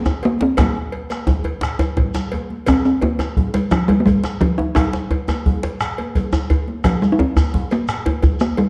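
A dark, moderately reverberant recital-hall sound frames this short cut from a longer West African drum ensemble piece, festive and earthy in a straight 12/8. Up front, a resonant talking drum carries the melody from the very start, ranging from F3 to Eb4. Beside it, a medium-tuned djembe played with hard hands sits close and dry, while a second djembe, tight and cracking with metal rattles and played with soft hands, sits further back in the room. A deep bombo anchors the low end, high-tuned congas ring quietly in the background, a metallic cowbell sounds close and dry, and a grainy, mellow shekere adds a vintage, band-limited texture. A drum fill between 1.8 and 2.7 seconds briefly stirs the steady groove.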